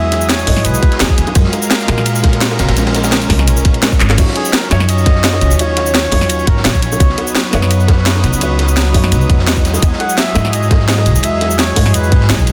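This dreamy, rolling liquid drum and bass excerpt opens with a jazz-style flugelhorn solo, warm with light vibrato and scooped notes and touched by digital delay, over a felt-muted upright piano, a background analog pad and a woody, thumpy pizzicato upright bass with gut strings that sits up front. The flugelhorn drifts in and out, returning at 4.4 and 10.0 s, while the mellow, intimate piano adds vintage 12-bit sampler grit and its own delay, and the pad's detuned sawtooth and square waves, sub octave and slow attack are thickened by chorus and sidechain pumping. Drums arrive at 0.1 s, led by an up-front layered garage kit with a cracking snare, hi-hat, handclaps, cabasa and crash cymbal, joined at 0.5 s by a tight electronic kick. Beneath them a crunchy breakbeat kit with dark cymbals and a high-tuned snare sounds saturated and rolled-off under high-pass filtering, and very quiet bongos played with soft hands add small-room texture. 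The harmony glides through lush chords such as Emaj9, Gbmaj9, Ebm9 and Db9sus4, all within light reverb and a dense, heavily limited modern master.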